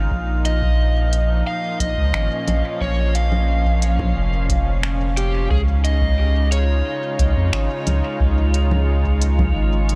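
A dry, close-sounding ambient dub excerpt in Bb minor at 89 BPM, meditative and hazy, where a round sine sub bass sits up front beneath a detuned sawtooth pad with chorus and tremolo and a faint, glassy texture of drifting overtones, while a deep overdriven kick thuds in the background and, from 0.5 s, an overdriven slide guitar carries the melody through dub echo alongside a smooth-hatted electronic kit of congas, finger snaps and hi-hat, the harmony moving from Bbm to Dbadd9 at 5.5 s before a brief break at 9.6 s.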